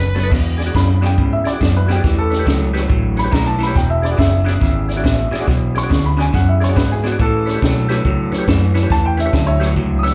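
A swung shuffle in four drives this short, soulful and gritty slice of electric blues, cut from a longer performance and heard as a live club gig through the venue's PA. A slightly broken-up electric guitar through a small old amp plays a low, compressed, lo-fi riff with slapback echo, while a dark, foam-muted fingered bass sits round and punchy beneath it. A compact cocktail kit sits up front yet sounds distant and roomy, with a high-tuned snare, a punchy kick, hi-hat, crash and dark, rolled-off cymbals. In the background, a warm, full tonewheel organ with percussive second-harmonic attack adds light overdrive through a slow rotary speaker, chorus vibrato, plate reverb and slapback echo. The bright, woody upright piano joins at 0.8 s and carries the solo, its brilliant, polished tone and long sustain treated with plate reverb, slapback echo and analog delay, as the harmony moves between E9 and A9.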